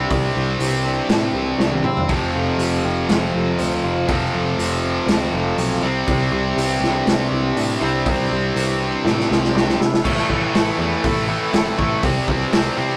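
A rough rehearsal-room recording with tube saturation and a moderate stone-room reverb frames this dark, angsty stretch of quiet-loud alternative rock, cut from a longer piece and riding a half-time feel until 10.1 seconds, when it opens into a new section. Up front, a tight, bright, double-tracked distorted guitar drives a picked riff, while in the background a second electric guitar through a small old amp plays lo-fi, slightly broken-up fingered arpeggios, and a growly, round picked bass sits underneath. The raw garage kit has a pumping small-room sound with dark cymbals, a punchy kick and a gritty, rolled-off top, and it adds drum fills at 1.6 and 9.1 seconds over chords moving from Cadd9 to F and later to Am and C.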